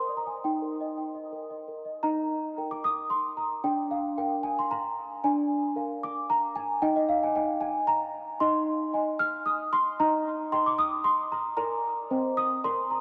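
In a straight 3/4 lilt at 113 BPM, this dreamy, tender classical lullaby in Eb major features a small celesta playing solo from 0.0 to 13.0 seconds, its bell-like, delicate tone sitting up front across a C4 to F6 range with a subtle chorus and diffuse ambient delay, drifting through Eb, Bb/D, Ab/Eb and Bb7 before landing on Cm, all soaked in a long plate reverb in this fragment cut from a longer piece.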